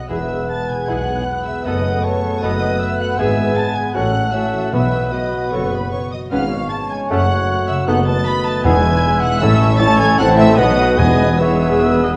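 At 154 BPM in 4/4 with a rubato feel, this dramatic, restless classical passage in E major is cut from a longer piece, its dark, lush violin section carrying the melody over a flute, clarinet, cor anglais and a second violin section on supporting lines, with viola and bassoon accompaniment, a ringing harp playing arpeggios, and sustained chords from French horns and trombones. Mellow trumpet stabs punctuate the texture while cellos, double basses and a distant, roomy tuba anchor the bass, and soft-mallet timpani with a round tone enter at 4.7 seconds and return at 8.6 seconds. The whole ensemble sits in a recital hall reverb and carries the warbling pitch drift of worn cassette tape.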